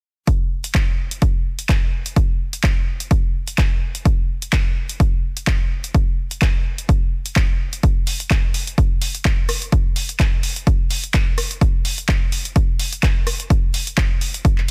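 A dry, dense and heavily limited mix opens this sunny, joyful house cut, taken from a longer piece and moving at 127 BPM in 4/4 with a light 55% swing on the sixteenths. A layered, tape-warm electronic kick sits up front and hits hard from 0.3 seconds to 14.6 seconds. Beneath it, an overdriven analog drum machine supplies handclaps, hi-hat and rim click, with sidechain pumping on the hats, running from 0.3 seconds to the end at 14.7 seconds.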